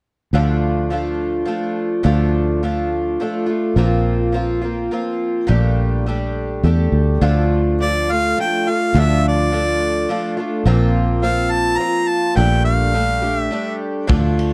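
A woody, shimmering twelve-string acoustic guitar and a round, foam-muted electric bass open this dusty, reflective folk-rock piece in 3/4 from the start and sit up front in a dry sound, before a clear harmonica takes the melody at 7.8 seconds and a distant, roomy drum kit with punchy kick and dark ride cymbal arrives only at 14.1 seconds, just as this cut from a longer piece ends.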